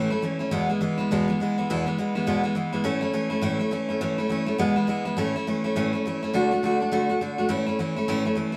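A bright, full-bodied picked steel-string acoustic guitar sits up front and plays alone through this rollicking, upbeat rock fragment at 206 BPM with a swung eighth-note feel in A major, tuned to A4 = 435 Hz, moving between A, E and D chords under a moderate stone-room reverb that gives it the air of a live take.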